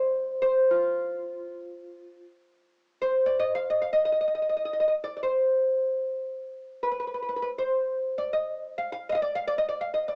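A solo oud opens this short cut from a longer piece, its plectrum-plucked double strings sounding woody and up front. The music belongs to the Turkish makam ensemble tradition and unfolds in free time, with a hypnotic, melancholic mood. The fretless instrument moves within a range from F4 to F5, and a brief opening phrase gives way at 2.6 seconds to a return of the same material that carries on to 10.2 seconds. The oud carries the tinted character of cassette tape, heard through a small speaker. It sits in a modest booth with a short, close ambience, like an intimate home recording.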